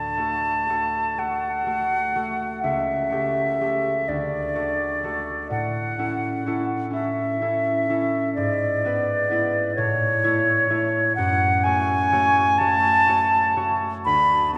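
A long, wet church reverb of about 3.7 seconds surrounds this short romantic classical duo for flute and harp, a passage cut from a longer piece. The mood is warm and lyrical, moving in a slow, rubato 6/8 at 42 beats per minute counted in dotted quarters, with the tuning set to A4 = 444 Hz. The concert flute carries the melody from start to finish between C#5 and B5, its pure, straight tone and crisp attack sitting up front and louder than the harp. The concert harp accompanies throughout, fingerpicked and ringing across a range from C#2 to C#5, with an acoustic, warm presence that is also close to the listener. The harmony moves from D through A7/C# and back to D, settles on A, then passes through E7/G# and A to F#m before arriving on Bm7/D near 14.1 seconds.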